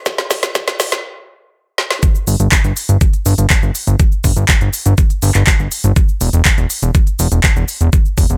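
A fat, detuned sawtooth bass with tube saturation and sidechain pumping arrives at 2.3 s, just after the drop at 2.0 s, joining a knocking, layered electronic kick and a deep house kit of woody snare, handclaps, smooth hi-hat and shaker, all up front in a dry, high-passed mix, in this hopeful, uplifting progressive house passage at 122 BPM, cut from a longer track, whose opening build-up of drum fills halts in a brief stop before the drop.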